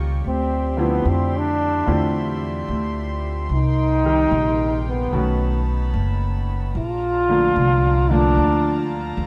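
A wistful, intimate jazz ballad at 74 BPM in 4/4 with a swung feel, this short section cut from a longer piece features a bright, punchy trombone with light vibrato taking an up-front solo melody from 0.3 to 8.9 seconds. Beneath it, a woody pizzicato upright bass anchors the low end while a clear concert grand piano with deep bass supplies accompaniment, and a distant chamber string section floats soft-attack sustained chords above. The harmony moves from Dm9 through Cm7 and B9 to Bbmaj7, set in a dark production with light reverb.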